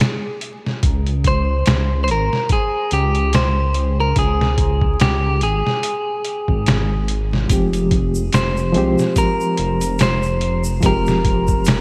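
Trip hop at 72 BPM with a swung 16th-note feel and a smoky, cinematic mood, where a clean, picked electric guitar melody carries vintage sampler grit and dub echo over a pitched-down, gritty sampler-style drum kit with a thumpy kick and gated reverb; a deep, rumbling detuned saw bass joins at 0.8 seconds, and at 7.5 seconds a reedy, slightly out-of-tune electric piano with tremolo and a bright tube shaker enter as the harmony moves to Fmadd9, set in a plate-reverbed, 1980s-style digital production flecked with vinyl crackle.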